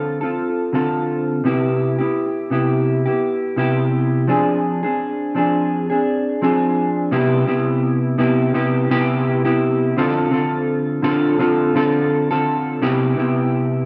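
Worn, warbling cassette tape and small-room ambience frame this dreamy, sunny indie pop fragment at 84 BPM in C major, where a dark, clean, fingered electric guitar plays alone up front through lush chorus, drifting pitch and tape echo, moving from Dm7 and Cmaj7 through a wistful Fm6 at 4.3 seconds before settling back onto Cmaj7.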